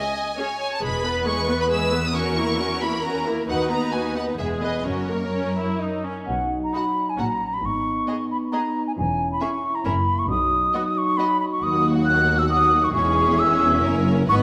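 Violins open this lively, spirited classical-period movement in B major, with a focused, vibrato-rich melody above an expressive second violin line and smooth violas, taken at a quick 135 BPM in 3/4 with a rubato feel. Woody cellos and the double basses soon settle in underneath. At 6.3 s a pure, up-front flute adds a second line while dark French horns hold sustained chords, the orchestra set in a moderate scoring-stage reverb in this excerpt from a longer piece.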